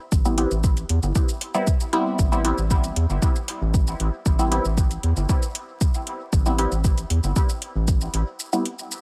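A deep, tape-warm electronic kick, a round wave-folded analog bass pumping under sidechain, and metallic shaker and hi-hat open this cavernous, nocturnal dub techno excerpt at 116 BPM in A minor, all over a bed of vinyl crackle. From 0.3 s a muted, detuned sawtooth chord stab on Am9 sits up front, sweeping through its filter and trailing chorus, phaser, dub echo and its own sidechain pumping. The dry sound thins out into a brief break at 8.4 s, where the chord stab lingers until 8.6 s and the shaker and hi-hat carry on to the close.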